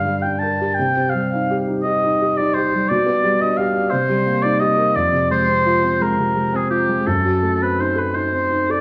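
A slow 6/8 pulse, stretched and loosened by rubato, carries this brief romantic classical duo for oboe and grand piano, heard as a fragment cut from a longer piece. The warm oboe sings the yearning melody up front from start to finish, its tone colored by a light vibrato and a vintage character. Beneath it, the dark grand piano supplies a mellow, intimate accompaniment, close and smooth, with the soft clatter of its action clearly audible. The harmony leans melancholic, moving from Gm through Cm and G/B to Cm7 and Fm before settling on a tense F#dim7 near 7.1 seconds. A moderate recital hall reverb surrounds the pair, while a worn, warbling cassette tape quality adds warbly pitch drift and a studio ambience, giving the whole fragment a faded, nostalgic patina.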